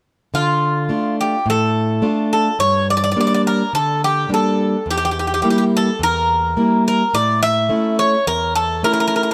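Light reverb surrounds two up-front acoustic instruments in this brief cut from a longer Greek folk piece, which sounds bittersweet and brooding. A Greek bouzouki carries the melody from 0.3 to 9.3 seconds, its picked double strings giving a metallic ring, with some strings doubled at the octave. Beneath it, a plugged-in acoustic archtop guitar plays fingerpicked accompaniment across the same span, its warm tone marked by finger squeak. At a steady 106 BPM in straight 4/4 and D harmonic minor, the harmony moves from Dm to Gm, then to Edim and finally A. The result is an intimate duet of metallic lead and warm support.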